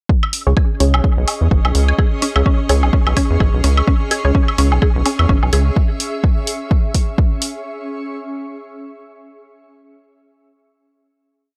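This short, complete minimal techno piece rides a swung four-on-the-floor pulse, with a punchy, overdriven electronic kick up front and dry, overdriven programmed hats and backbeat alongside. Overdriven woodblock clicks and blips in cross rhythm, trailed by analog delay, while a rubbery, hollow square bass rolls out a bouncy staccato groove that pumps against the kick until about 5.7 seconds. Sparse, muted dub chord stabs, one detuned sawtooth shape moved in parallel, echo through chorus and delay from 0.5 seconds. At 2.0 seconds a woody, round FM pluck enters with a repeating 6-step sequence that drifts against the bar. Above it all, a cloudy granular pad with its own reverb slowly shifts its chords and pumps along. The mood is clinical and sparse, and the gritty hardware recording carries transformer saturation and cassette tape colour.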